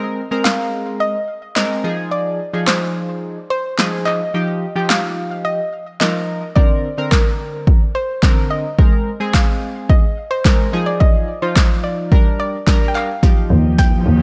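Dance-pop with a summery, carefree mood, moving at 108 BPM in a straight 4/4 in Eb major, heard as a short cut from a longer piece. A soft, round pluck carries the melody from the start, its gentle tone coloured by chorus and tape echo, while glossy, chorused retro synth keys with a bright pulse-wave edge supply the accompaniment with sidechain pumping. A deep house drum kit enters at 0.5 seconds, up front with a punchy kick, punchy snare and handclaps, over a chord cycle that drifts through Abadd9, Fm7, Ebadd9 and Bbadd9 before turning on Bb6. From 13.2 seconds a drum fill leads toward a return to Ebadd9, as a glassy, ethereal FM pad swells in slowly in the background with ensemble chorus and built-in reverb. In the final moments a bowed, muted double bass with a dark, veiled tone and vibrato arrives on a low Eb at 13.5 seconds, pumping with the sidechain, and a background riser slips in at 13.9 seconds. 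Light reverb gives the whole a modest sense of space.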